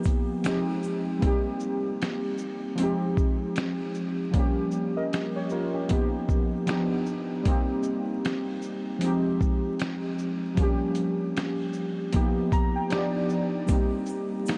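A dreamy, reverb-soaked mix with a bed of vinyl crackle gives this short lo-fi hip hop cut from a longer piece a hazy, nostalgic air. It moves at 77 BPM in 4/4 with a swung sixteenth-note feel, set in F minor and tuned slightly sharp to A4 = 444 Hz. Up front, warbling synth keys with a detuned, chorused blend of triangle and sawtooth tones play mellow, decaying chords through a low-pass filter, cycling through Fm9, Cm7, Gm7b5 and altered G dominant harmonies, and they add a short fill at 12.1 seconds. Beside them, a dusty, sampler-style drum kit with gritty 12-bit character sets a compressed, tape-warm groove of thumpy kick, fat snare, hi-hat, shaker and finger snaps. A grainy acoustic tube shaker sits in the background, heard only until 1.0 second and again from 13.7 seconds, while a huge ambient reverb lends the whole mix its drifting, dreamlike space.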